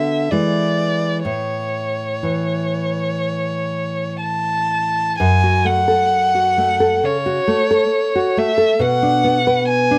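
This romantic duo for violin and classical guitar is serene and lyrical, moving at a slow, rubato 54-69 BPM in 4/4. A single bowed violin carries the melody up front, its rich, expressive tone shaped by vibrato, a soft attack and gliding portamento between notes. Close beside it, the fingerpicked nylon-string guitar supplies a deep classical accompaniment, with finger squeak audible on its strings. The passage opens in A major over E7 and A chords, then turns to F# minor at 5.2 s, moving on to a B minor chord near the end. Light reverb and a dark, warm production lend intimacy to this excerpt from a longer piece.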